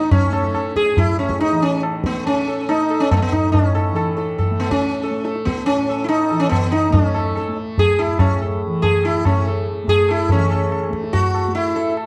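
Sitar, tanpura and tabla sound together from the opening moment of this radiant, meditative fragment of Hindustani classical music, cut from a longer performance. The plectrum-plucked sitar carries the melody up front, its bright, round tone buzzing and ringing with sympathetic strings in a shimmering halo. Beneath it the softly plucked tanpura sustains a mellow, buzzing drone, while the high-tuned tabla rings close in a four-beat metre. The pace gradually quickens throughout, and a new section arrives at 10.3 seconds before the sitar falls away at 11.9 seconds, leaving drone and drums to close. A moderate recital-hall reverb and a dark, warm production give the whole a warm depth.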